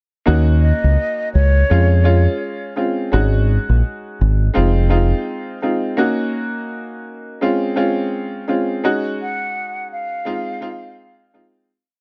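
A worn, woody upright piano carries this short boom-bap hip-hop piece, playing chopped chords that repeat like a sampled loop, with audible action noise, a slightly detuned, boxy tone and short sustain, all filtered at both ends and set up front. The mood is reflective and dark, moving at 84 BPM in 4/4 with a swung sixteenth-note feel in Eb dorian, as the harmony cycles through Ebm7, Dbmaj7/F, Ab7sus4 and Fm7. A round, deep fingered electric bass plays a looped line beneath the piano, direct and amped and sitting prominently in the mix, until it drops out at 5.1 seconds, after the break has begun at 3.1 seconds. A mellow silver concert flute adds a short, airy looping melody with vibrato and tongued notes, its hollow tone filtered and touched with digital delay, appearing briefly near the start and returning at 9.2 seconds. The dry, dark production keeps the piano close and intimate, and the piece fades out from 8.8 seconds.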